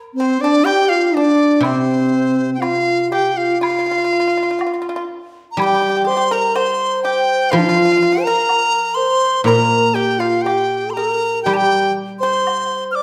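A reverberant recital-hall sound surrounds this short cut from a longer Chinese chamber ensemble piece, festive yet graceful, moving in a free rubato around 61 BPM in 2/4 in the C shang mode. Up front, the buzzing, softly attacked bamboo dizi carries the melody above a bright, close-miked low xiao, whose tongued, airy second line sits just beneath it, while a percussive, dry pipa and a close-sounding woodblock stay in the background. From 1.6 s a mellow, silvery guzheng adds ringing low accompaniment, and the music moves into a new section at 3.6 s.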